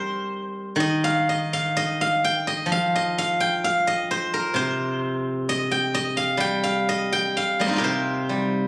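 Elegant and longing, this brief excerpt of Chinese traditional music features a single steel-string zither playing solo in G jue mode at a flexible, rubato 64 BPM in 4/4. The zither carries everything alone from 0.0 to 8.7 seconds, ranging from C3 up to G5. Plucked with fingerpicks, its acoustic tone is bright and silvery, with notes that ring and sit up front in the sound. A moderate recital-hall reverb with a 1.4-second decay surrounds the instrument, and the recording also carries studio reverb and compression. The fragment was captured on a phone in the room.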